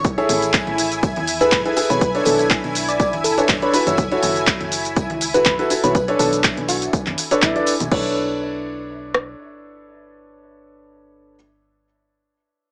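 A small-speaker sound with light reverb frames this bittersweet, energetic piano house excerpt, where an up-front warm baby grand piano riff pumps against the sidechain over a punchy, tape-tinged analog drum machine, round dark FM bass, background tambourine and congas, a silky detuned string pad with ensemble chorus and phaser, and a gentle triangle-toned synth lead with chorus and tape echo, all moving through Amaj7, Bm9 and F#m7 before the piano carries on alone after 9.3 seconds.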